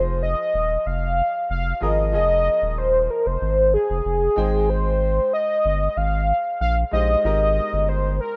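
Hypnotic and smooth, this short afrobeats fragment cut from a longer piece moves at 94 BPM in F minor, resting on Fm7 before shifting to Abmaj7 at 4.4 seconds. A velvety, full-bodied synth lead carries the melody up front, its detuned unison tone shimmering with chorus, vibrato and tape echo, while an intimate, boxy grand piano with audible action noise plays accompaniment beneath. A deep, thick saturated sub bass sits forward in the mix until 8.2 seconds, all within the light reverb and rough feel of a home demo.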